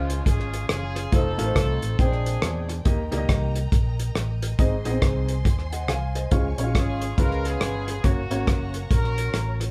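A dry, tight-kicked soul drum kit sits up front in this uptempo gospel excerpt, its hi-hat, kick and rim click carrying a swung feel with a rolled-off top. Beside it, a dark, round fingered electric bass holds the low end with an amped tone. A woody upright piano with long sustain plays accompaniment until 8.8 seconds. Behind it, a bowed studio string section with soft attack and expressive portamento hangs in the background with sustained chords. A clear, roomy horn section with vibrato carries the melody in two phrases, falling silent after 2.8 seconds and returning at 6.8 seconds. The band plays live in one room with moderate reverb, and the reverent, soulful harmony moves from Db through F7 and Bb13, resting on Eb and Ab before turning to Db7 and Gb.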